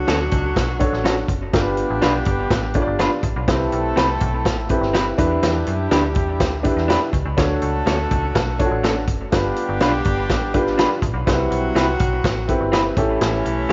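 A vintage drum kit with a punchy kick and medium-tuned snare drives a straight 4/4 at 123 BPM, setting an uplifting, danceable groove for this uptempo 1960s-style soul excerpt in D major, cut from a longer piece. A metallic FM bass with a fast, decaying attack sits under a woody upright piano with long sustain, while a dark, slightly broken-up electric guitar through a small old amp adds compressed stabs with tape echo from the background, and a clear, tight horn section with light vibrato and octave doubling carries a second line. The chords cycle through Dmaj7, G7, Cmaj7 and Em7 before turning to A7 at 13.0 seconds, all wrapped in a moderate echo chamber and studio ambience with a rolled-off, vintage top end.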